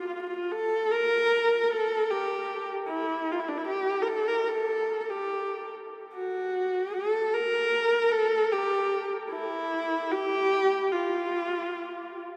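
A fado excerpt, passionate and longing, in which a solo bowed viola plays alone from 0.0 to 12.2 seconds at 75 BPM in 2/4, with a loose rubato feel and tuning set to A4 = 439 Hz. The single player sits up front, the tone warm and a little boxy, singing expressively with vibrato and portamento between D4 and Bb4. A wet cathedral reverb with a 6.1-second decay surrounds the instrument, giving it the resonance of a church or concert hall.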